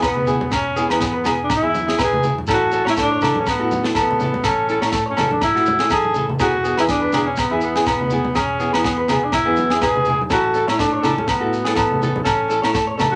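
A breathy, whispered tenor saxophone carries the melody up front with light vibrato and a soft attack, over a slightly broken-up electric guitar picking arpeggios and a bright, fingerpicked flamenco guitar whose finger squeaks come through. This sunny, danceable highlife groove swings gently in 4/4, with a punchy fingered electric bass and a tight funk kit with a high-tuned snare, dressed in ringing agogo bells, congas entering at 0.2 seconds, and a grainy, very quiet shekere. A drum fill at 5.9 seconds leads back to E as the chords move between E and A, all set in a club reverb in this excerpt cut from a longer piece.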